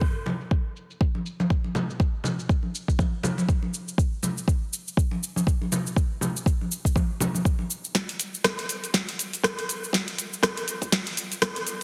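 An earthy, driving house groove opens on a deep, layered electronic kick and a filtered afro-pop drum kit of sharp snare, metallic hi-hats, rim clicks and shaker, with a swung sixteenth-note feel and a filter sweep running over the drums. Bright, damped congas with a thin-skinned, vintage character slip in at 0.3 seconds and drop out at 7.7 seconds, just before the drums push into a build-up and fill from 7.9 seconds. Everything sits up front in a heavily compressed, radio-like mix with light reverb.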